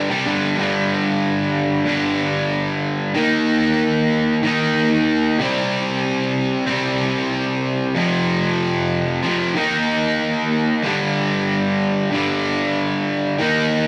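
Rock in G minor at 94 BPM, this menacing, driving passage, cut from a longer piece, features a single cranked stack electric guitar playing throughout its 13.9 seconds, bright, picked and overdriven, double-tracked and placed up front. It works through G5, Eb5, C5, F5 and Eb5 power chords before returning to G5, spanning F2 to Eb4. A moderate stone-room reverb and a rough rehearsal-room sound give the guitar a raw, live-in-the-space character.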